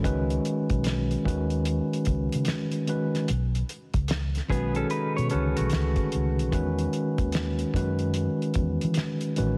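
Smooth and sensual, this short cut from a longer R&B and neo-soul piece sits at a relaxed 74 BPM in 4/4 and E major, with a swung sixteenth-note feel. A mellow tine electric piano carries the accompaniment up front, clean and heard through its built-in speakers, moving from C#sus2 to B9 at 3.3 seconds and settling on Emaj9 at 6.5 seconds. Beneath it, a vintage muted fingered electric bass gives a dark, round, foam-muted tone, while a cloth-damped, thuddy drum kit sits dry and close with a fat snare, tight kick, hi-hat and a rolled-off top. Between 4.5 and 6.5 seconds, a semi-hollow electric guitar adds a brief, compressed, hollow-body second line bathed in spring reverb. Light reverb and a small room ambience frame the mix, which carries a heavily compressed radio sound and a layer of vinyl crackle.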